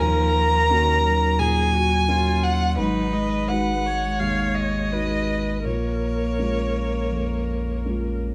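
Reflective and melancholic, this short neoclassical piano-and-strings excerpt in Eb minor moves at a rubato 84 BPM in 4/4 through Ebm7, Abm7 and Bbm7, with a focused, vibrato-laden solo violin carrying the melody up front until 7.8 seconds while a close, smooth cello sings a second line, an even viola and a dark, boxy concert grand fill in the accompaniment, and a round sine sub bass anchors the low end, all set in light reverb.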